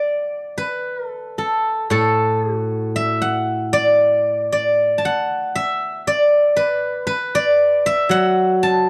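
A steel-string zither plays alone from the first moment, its ringing, silvery tone set up front in a dry, close studio sound with a small room around it. This short excerpt of Chinese traditional music unfolds at a loose, rubato 58 BPM in D gong mode, with the fingerpicked zither spanning A2 to A5. The mood is pastoral and serene throughout its 8.9 seconds.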